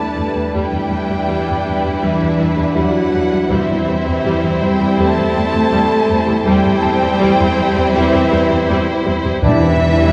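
Ominous and uneasy, this short cut from a longer suspense film score moves at an unhurried pace in four, with its harmony resting on Em7, shifting to C/E at 3.5 seconds and returning to Em7 at 9.4 seconds. A distant, dark violin section carries the melody with soft attacks, vibrato and expressive portamento, while a second violin section adds a lush, smooth line beneath it. Violas and cellos sit close but in the background with a rich, even bowed tone, and a double bass section enters at 0.2 seconds to hold a low E. Behind the strings, a roomy French horn section and a clear, vintage-toned trombone section sustain chords, joined by a very quiet glass harmonica whose pure, ethereal sound carries a slow attack and audible beating. A very quiet concert harp adds ringing fingerpicked texture, and softly mallet-struck timpani give round strokes at 3.5 seconds and again near the end. The whole recording sits in a cavernous cathedral reverb, with vinyl crackle adding an aged, haunted quality.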